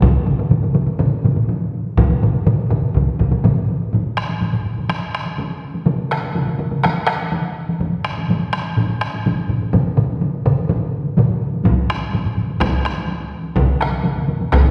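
Close, dry taiko struck with hard sticks sounds throughout this driving, powerful Japanese traditional drum ensemble passage at 124 BPM in straight 4/4, joined by an up-front layer played with heavy sticks that stops at 13.0 s, a live-room group, and a vintage, band-limited taiko part heard until 3.3 s and again from 11.7 s, the ensemble set in a wet concert hall and heard from further back with its highs rolled off, in a passage cut from a longer piece.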